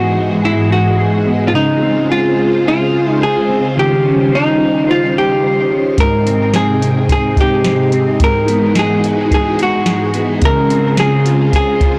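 A vintage hollow-body jazz guitar carries the melody up front, its clean, picked tone warm and compressed, with tape echo trailing each note in this dreamy, ethereal dream pop excerpt at 108 BPM in 4/4. Alongside it, a phased string machine holds sustained chords with a swirling, warbling sawtooth sound, bright and slow to bloom, colored by ensemble chorus and phaser. A mellow electric guitar plays fingered arpeggios in a dark, clean voice, washed in chorus and tape echo. At 6.0 seconds a soft vintage rhythm box joins with a deep kick, crisp snare and metallic hats, its analog sound overdriven and pushed forward. The harmony drifts through lush extended chords such as Emaj9/G#, Dbmaj7 and Abmaj7, while light reverb and digital ambience surround a blown-out, saturated mix that gives the piece a hazy, worn quality.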